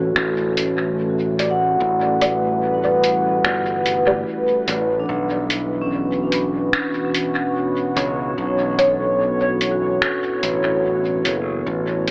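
A warbling, detuned tape-like pad holds sustained chords with chorus and phaser while a ringing vibraphone plays arpeggios through tape echo and a punchy, bright fingered electric bass sits underneath, opening this meditative, hazy ambient dub excerpt in B minor at 73 BPM, where muffled sampler-style finger snaps and hi-hat with dub echo join at 0.2 seconds over a very quiet deep electronic kick, a dark, nasal filtered chord stab drifts in the background from 1.4 to 9.0 seconds, and the echo-heavy mix carries a spring reverb and an AM radio sound as the harmony moves from A7sus4 to Bmadd9.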